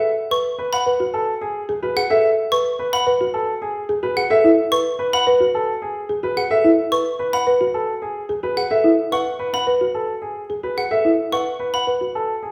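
Propulsive and bright, this short cut from a longer piece of minimalist classical pattern music moves at 109 BPM in a straight 4/4, resting on a rootless Amaj9 chord in A major. A clear, open grand piano carries the melody up front with long sustain, while a folk marimba played with soft mallets spins mellow, round, rustic arpeggios, and a xylophone with wooden mallets adds sharp, percussive arpeggios higher up from 0.3 seconds. The ensemble sits further back in a large studio with a wet reverb.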